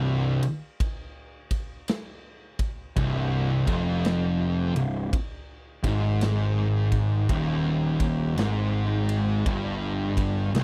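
Stoner and doom metal with a heavy, sludgy mood, this short cut from a longer piece sits on a single C minor chord with a slow, swung feel in 4/4. Two thick, distorted fuzz guitars play the riff low in their register: one sits up front and the other stays in the background, both electric and picked. A growly, overdriven fuzz bass, played with a pick and captured both direct and through an amp, anchors the low end with a punchy attack an octave beneath the guitars. At 0.4 seconds a big acoustic rock kit enters, its punchy kick, medium-tuned snare and bright ride cymbal sounding natural and up front in a large room. The overall sound is dry and close, with little reverb, in the manner of a 1970s studio recording.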